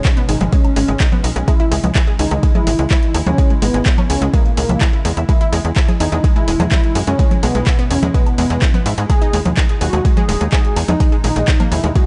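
An overdriven, deep electronic kick drum sits up front in this dark, hypnotic melodic techno excerpt, driving a straight 4/4 pulse at 126 BPM. Beneath it, a tight, nasal sequencer bass with a sawtooth-and-square edge pumps against the kick from 0.3 seconds, while a punchy, tape-warm analog drum machine adds congas, handclaps, hi-hat and woodblock, its hats and percussion breathing with sidechain pumping. A thick, bold unison lead carries the melody with vibrato and a sub-octave weight, bathed in digital delay and pumping, as a round, detuned analog pluck spins bright arpeggios through chorus and dub echo. Far in the background, a very quiet, morphing wavetable pad warbles with slow-attack sustained chords, and a gritty, very quiet sampler-style kit adds hi-hat, ride cymbal and a medium-tuned snare. The harmony moves from G#m to C#m, then E at 5.3 seconds and a suspended D#sus4, all held in a dark, warm production with light reverb and digital ambience.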